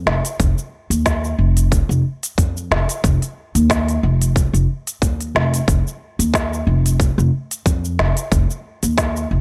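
Meditative and hypnotic, this organic downtempo cut at 91 BPM in 4/4 with a light 16th-note swing rides on a thumpy, woody pizzicato upright bass sitting up front from the start, joined at 0.1 seconds by an overdriven organic electronic kit of crisp hats, shaker and snare re-recorded in a large room, while a tight, overdriven electronic kick punches through from 0.4 seconds in a dry mix.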